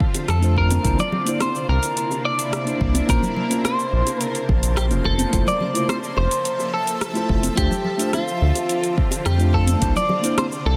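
A round, up-front analog bass anchors this smooth sunset chillout excerpt. Around it sit a picked, compressed clean electric guitar melody with analog chorus and digital delay, and a mellow tine electric piano carrying vintage 12-bit sampler grit and tape echo. A shimmering, ethereal pad holds sustained chords through chorus and phaser, while an airy, wind-like noise texture stays in the background. The rhythm comes from a layered electronic kick, a deep house kit of metallic hi-hat, cabasa and rim click, and soft-handed bongos and congas, set in a dense, heavily limited modern master with light digital ambience.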